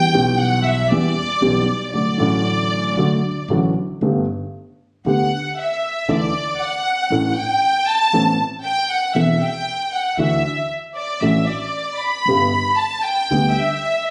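Melancholic and passionate, this tango excerpt in G major moves at 116 BPM with a rubato feel, its chords drifting from Em and D through colored shades such as Amadd9 before settling on G. A smooth, vibrato-rich bowed violin section sits up front and is featured throughout, while a dark, mellow concert grand with deep bass and short sustain shares the foreground and a woody, growly pizzicato upright bass stays in the background. The piano and bass stop at 13.5 seconds, leaving the violins to ring on until 14.1 seconds, all heard through moderate studio reverb in a recording made on a phone in the room.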